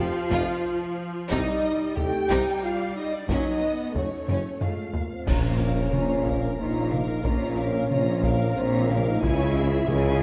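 A dark, dramatic stretch of epic orchestral film score opens with the full ensemble already sounding: a lush, distant violin section carries the melody with rich vibrato while a second, darker violin line moves alongside it, and a clear, intense viola section fills in the accompaniment. Punchy French horns hold sustained chords prominently, supported by a low foundation of cellos, double basses and a roomy tuba sitting in the background. Hard-stick taiko drums enter at 0.3 seconds in a small-room sound, driving the music forward in a steady three-beat metre. A drum fill from 4.3 seconds builds into a full-band accent at 5.3 seconds, where close, dry clash cymbals and concert bass drum strike and the music moves into a new section in B-flat minor. A moderate scoring-stage reverb gives the orchestra a spacious, cinematic depth as the cut-down passage ends.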